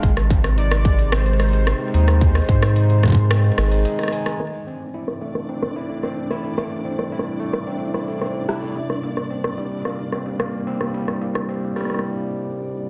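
A straight 4/4 pulse at 110 BPM opens this melancholic, cerebral IDM piece in A phrygian, with a distorted electronic kick and a prominent round analog bass with tube saturation under an industrial kit of crisp filtered hi-hats and rim clicks, while a velvety chorused synth lead sings a short melody over a warbly, nostalgic tape-like pad and gritty, overdriven tine electric piano arpeggios run through phaser and delay, until a break at 3.9 seconds clears the low end, a filter sweep moves across the pad from 4.4 seconds, and a flickering, grainy granular texture drifts in at 4.9 seconds over a dense, heavily limited modern master.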